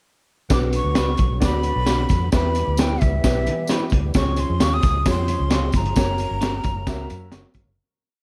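A dark, warm production with light reverb and a small room ambience frames this short, complete piece of uptempo 1960s-style soul at 132 BPM in B harmonic minor, urgent and passionate in mood as it moves through Bm, Em, C# and F# before fading out from 6.0 seconds. Up front, a crunchy breakbeat kit with a high-tuned snare, tight kick and gritty, saturated, rolled-off top drives a soul beat with the snare on all four beats, while a foam-muted, round, punchy electric bass plays a melodic, syncopated line full of slides and chromatic approach notes. A breathy metal jazz flute carries the motif-based melody with vibrato, tongued chiff and a slightly unsteady tone, over a woody, slightly detuned upright piano pushing close-voiced chords. Deeper in the mix, a fat, lightly overdriven tonewheel organ with key click, chorus vibrato and slow rotary speaker holds a very quiet sustained pad, and a slightly broken-up guitar through a small old amp adds short picked chops on the backbeat from 1.0 seconds. 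A jingly tambourine sounds on every beat in the background, and barely audible low-tuned congas join at 4.4 seconds with a slap on two and open tones on four.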